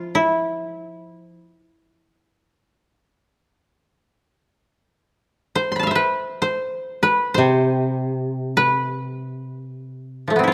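Two kotos open together in this meditative, still fragment of Japanese traditional chamber music, one carrying the melody across a range of F3 to C6 while the other plays a low accompaniment between C3 and F3. The playing unfolds in free time, tuned to A4 = 436 Hz, and both fingerpicked kotos sound woody and dry, placed up front by close, detailed microphones. A moderate recital-hall reverb gives the 10.5-second passage a sense of space around the plucked strings.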